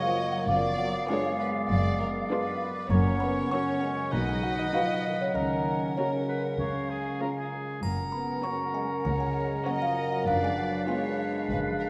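Cinematic, whimsical film cue in F# major at 98 BPM, mischievous and magical, where a delicate, tinkling, slightly out-of-tune music box carries the melody with a chamber violin section played sul tasto, while a clear clarinet, hollow flute section, distant oboe and a quieter second violin section weave second lines over a background viola section, dark French horn chords, ringing thumb-plucked harp arpeggios, and cello and double bass sections entering at 0.5 s, with a brief triangle at 7.8 s, all bathed in a wet concert hall reverb.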